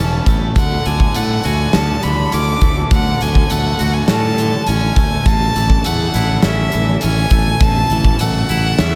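Post-rock at 102 BPM in A major, this soaring, euphoric fragment cut from a longer piece sets a clear, focused bowed violin melody with vibrato and digital delay over a very quiet, lush symphonic string section holding sustained chords, a bright, twangy clean electric guitar picking arpeggios through slapback echo and delay, a growly, fuzz-overdriven fingered bass up front, and a huge, punchy arena drum kit with a pumping room sound entering at 0.3 seconds, all moving from A to Dmaj7 and back to A under light reverb.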